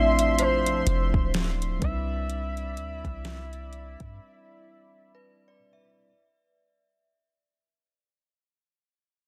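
Longing and moody, this short excerpt from a contemporary R&B piece moves at a slow 63 BPM in 4/4 with a swung sixteenth-note feel, its harmony shifting from Dm9 to Cmaj9. A smooth, gliding sine lead carries the melody between C5 and E5, its vibrato and portamento colored by chorus and digital delay, while a mellow tine electric piano and a shimmering, retro pulse-width pad hold the chords beneath it. An FM synth chime rings with an inharmonic edge in the background, treated with ensemble chorus and delay, and it lingers until 7.1 seconds. Up front, a deep, boomy 808-style bass sounds from the start, joined at 0.2 seconds by an electronic drum kit with a soft kick, deep snare, metallic hats and overdrive, and the two drive the groove until both drop out at 4.2 seconds, opening a break carried by the lead, keys, pad and chime. The whole passage sits in a digital ambience with a dense, heavily limited modern master, and it fades out across its length.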